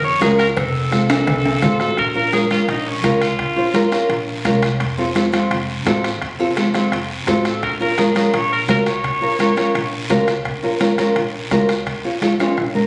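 Cumbia with a fiery, passionate mood, heard as a short cut from a longer piece, with a bright alto saxophone up front playing a solo melody with light vibrato and a vintage pop tone, first from 0.0 to 4.2 seconds and again from 7.5 seconds. A fingerpicked nylon-string guitar, deep and classical with audible finger squeak, shares the front and closes with a fill at 12.6 seconds, while a woody pizzicato upright bass anchors the minor-key harmony. Raspy guiro, bright thin-skinned congas played with soft hands, a soft-beater bombo, and ringing timbales and cowbell set back in a live room drive the groove, with drum fills, all bathed in a wet studio reverb and captured on a phone in the room.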